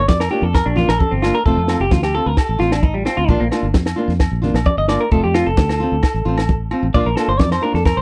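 A clean, compressed electric guitar with tape echo opens this carefree highlife guitar-band excerpt at 131 BPM in Bb major, playing a featured arpeggiated solo over a round, dark fingered electric bass as the chords move between Bb and F, while a compact cocktail drum kit with a high-tuned snare and punchy kick sits up front, low-tuned congas and ringing agogo bells stay in the background, and a small, fingerpicked nylon-string guitar adds accompaniment, all in a dry, close 1970s-style studio sound.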